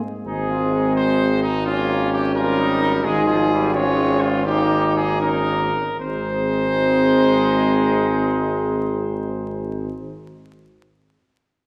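Classical brass quintet music in 6/8 and Ab major, stately and warm, moving at 75-87 BPM in dotted quarters and slowing between 2.4 and 6.0 seconds in this passage cut from a longer piece. A vintage-toned lead trumpet carries the melody up front, with a mellow French horn sounding distant and roomy from the start. A mellow second trumpet line, a brilliant trombone with light vibrato in the background, and a punchy bass trombone anchoring the bass on Ab1 all join at 0.3 seconds, everything heard from further back in a reverberant recital hall with a touch of vinyl crackle.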